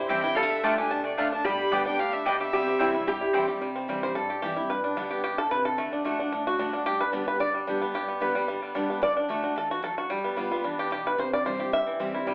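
A twangy, percussive five-string banjo sits up front in this lively, virtuosic bluegrass excerpt at 222 BPM in C major, sharing the opening melody with a focused, bowed fiddle carrying light vibrato while a nasal, metallic lap resonator guitar slides along a second line and a woody, double-strung mandolin adds stabs. Fiddle, resonator and mandolin drop away by about 3.5 seconds, and the banjo takes a fingerpicked solo from 3.6 seconds to the end over a full-bodied dreadnought guitar accompaniment with audible finger squeak. The band plays live in one room, heard through a telephone-like filter with a wet, large studio reverb.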